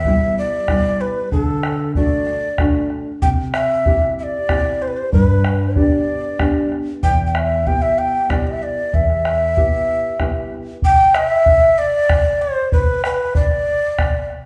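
A straight, unhurried 3/4 pulse at 95 BPM carries this earthy, wistful Andean folk passage in E minor, cut from a longer piece. A large quena leads the melody between A4 and G5 with a breathy, woody, end-blown tone, crisp chiff on each attack and a slightly unsteady straight tone that sits up front. Beneath it, a thumb-plucked nylon-string guitar gives dark, full-bodied accompaniment on old strings, moving through Em, D, C and G before returning to Em. A round, acoustic bombo keeps the beat close and present throughout. The guitar drops out at 10.7 seconds, leaving the quena and bombo to restate the opening section on their own. The ensemble plays together live in one room, bathed in a large, wet studio reverb.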